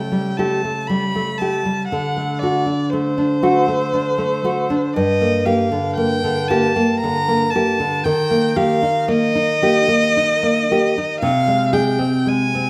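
A rich, bowed solo violin carries a melancholic, solemn melody with expressive vibrato, soft attacks and portamento, over a deep, fingerpicked nylon-string guitar accompaniment in which finger squeaks can be heard, both up front in this romantic duo in a rubato 3/4, set in a moderate recital hall reverb and cut from a longer piece.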